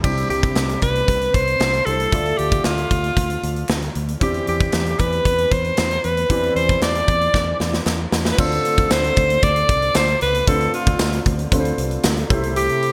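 1980s-style pop in D dorian at 115 BPM, this nostalgic, moody excerpt sets a bright, up-front alto saxophone melody with vibrato over a concert grand piano with long sustain and analog chorus, a round, punchy fingered electric bass, a big rock drum kit with gated reverb and tambourine, and barely audible crisp handclaps, moving through Cadd9, Dmadd9 and Cadd9/E before a drum fill at 7.3 seconds leads into a Dm7 passage at 8.4 seconds, all within a bright digital production and plate reverb.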